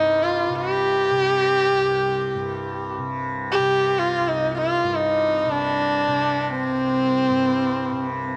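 Solemn and introspective, this short excerpt of Hindustani classical music unfolds in free time in raga Bhimpalasi, centred on C. A single bowed sarangi carries the melody up front, its tone expressive with soft attacks, vibrato and gliding portamento, while its sympathetic strings add a faint halo around each phrase. Beneath it, a softly plucked tanpura holds a low drone throughout the full 8.4 seconds, its acoustic, buzzing strings giving off a shimmering resonance well behind the lead voice. Close, detailed microphones capture the intimacy of both instruments, and a light reverb lends the space a gentle bloom. The result feels meditative and unhurried, as if drawn from a longer, patient exploration of the raga.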